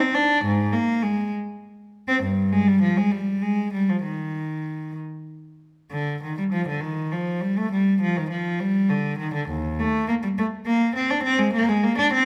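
A lone bowed cello opens this flowing, serene passage, a baroque-style suite movement in 6/8 at 67 BPM (dotted quarters) played with rubato, settling into Bb major from 5.9 s. The single player's period-style, gut-string tone is rich and reedy, heard close and up front as it moves between Eb2 and D4. A recital hall reverb with a 1.3 s decay surrounds the instrument in this short cut from a longer piece.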